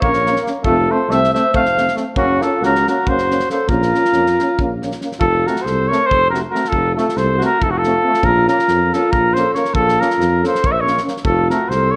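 A clear, up-front flugelhorn with light vibrato carries the melody in this restless, fiery Balkan brass band excerpt in 7/8 at 278 BPM in Bb Hungarian minor, joined by a mellow alto saxophone second line with slapback echo, a smooth-topped tuba bass, a bright, distant trombone and a dark, soft-attacked euphonium in the background, and a loose acoustic drum kit with a fat snare and tight kick, within a moderate recital hall reverb.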